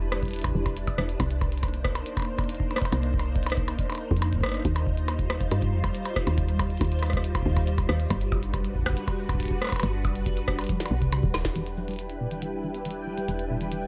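A straight 4/4 pulse from a tape-warm analog kick and an up-front glitchy kit of tiny snare, clicky hats, cabasa, rim clicks, toms and percussion blips drives this eerie, cerebral IDM excerpt, where a round, woody FM bass and a silky vintage string machine with phaser and ensemble chorus move through Em7, Cm9, D#69 and Gmaj7, until a drum fill at 10.7 seconds gives way at 11.6 seconds to rubbery, resonant acid bass arpeggios and, from 11.8 seconds, a bubbling, detuned texture of random filter steps with chorus and its own reverb.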